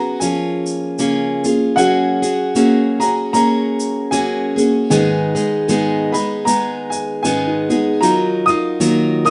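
Acoustic folk for a small band at a peaceful, swung 77 BPM in F# major, where a clear, woody upright piano carries a boxy, short-sustained melody over picked plugged-in steel-string guitar with audible finger squeak up front, soft arpeggios from a felt-muted upright piano with a dark, vintage tone, and a grainy egg shaker entering at 0.2 seconds, all played live in one room with moderate reverb through chords moving from F#add9 to G#m to D#madd9.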